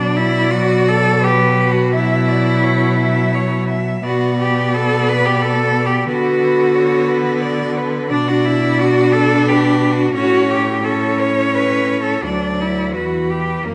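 A moderate recital-hall reverb surrounds this short, elegiac classical passage for four bowed cellos, cut from a longer piece and lasting about 13.7 seconds. In B minor and 3/4 at around 87 BPM, the pulse moves with uneven, rubato beats that give the lyrical line a melancholic, breathing quality. The highest cello carries the melody between A#4 and E5, sitting softer in the blend than the others, while a second cello plays a focused, up-front counterline from A#3 to C#5 with a smooth top. A close-sounding cello fills in the accompaniment in the middle register, and a distant yet up-front bass cello anchors the ensemble from D2 to D3. Each player bows with vibrato and a rich tone, as the harmony moves from B minor through A and D to close on E minor at 12.9 seconds.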